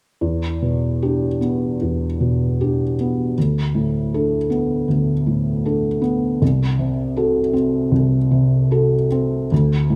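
Neoclassical minimalist piano in a melancholic, reflective mood, played rubato by a solo felt-muted upright piano that sounds soft, mellow and intimate, up front with audible action noise, moving from Em7 through Bm7/D to F#dim/C in a moderate recital hall reverb across this short passage cut from a longer piece.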